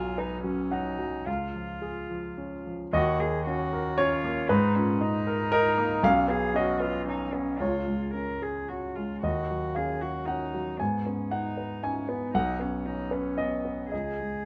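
This neoclassical piano and strings piece in Eb minor moves in a rubato 3/4 at roughly 107-118 BPM, with a longing, reflective mood. A warm grand piano with short sustain sits up front as accompaniment across the full 14.5 seconds, cycling through chords such as Bsus2, Db and Ebm7. A single bowed cello adds a quieter second line, played sul tasto with a pure, floating tone and smooth top, all framed in light reverb.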